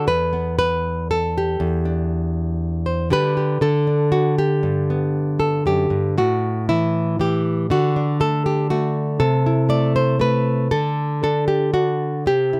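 Hopeful and warm, this brief folk passage cut from a longer piece features a solo fingerpicked nylon-string guitar in 3/4 at 118 BPM, played with a flexible rubato feel and captured up front through close, detailed microphones with little reverb, its classical acoustic tone moving from an opening E5 chord through Cadd9/E, Dsus4 and G before a second section around 6.2 seconds turns to A5, D and Amadd9/C.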